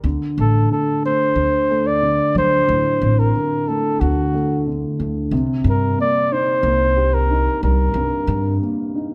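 A dark upright piano with audible action noise and a woody, pizzicato upright bass on steel strings open this heartbroken, intimate acoustic folk-pop ballad fragment at 91 BPM in straight 4/4, before a mellow flugelhorn enters up front at 0.4 s with light vibrato and scooped, jazz-style solo notes, as the harmony moves from D7 to Cm7 at 5.3 s within a moderate recital-hall reverb captured by close, detailed microphones.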